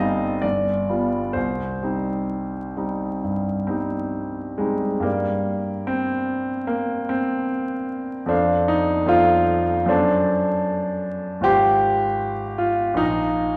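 Classical in a romantic vein, this short excerpt cut from a longer solo piano character piece carries a stormy, brooding mood. A clear concert grand piano sits up front with a natural tone and deep bass, spanning G1 to C6 across the full 13.6 seconds. The tempo moves freely in rubato between 62 and 79 BPM in 4/4, opening in C minor with a G7 resolving to Cm before shifting to G minor at 5.0 s. From there the harmony moves through F and F#dim toward Fm/Ab, closing on Bb5 at 13.0 s. A wet recital hall reverb lends the sound a spacious, resonant setting, while vinyl crackle adds a worn, aged patina.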